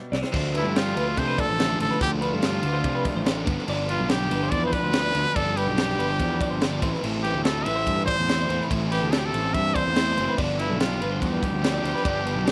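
Playful and wistful, this math rock and midwest emo piece moves at 143 BPM in straight 4/4, opening with a short fill on a crisp fusion drum kit with a high-tuned snare and punchy kick as the chords cycle through Dm7, G7, Am7 and G7. A clean, twangy twelve-string electric guitar plays arpeggios with slapback echo over a dark, fuzzy fingered electric bass, while an overdriven, double-tracked semi-hollow guitar enters at 0.3 seconds with a riff. Up front, a bright trumpet with vibrato and a smooth top carries the melody from 0.6 seconds, also touched by slapback echo, in a dry sound with little reverb.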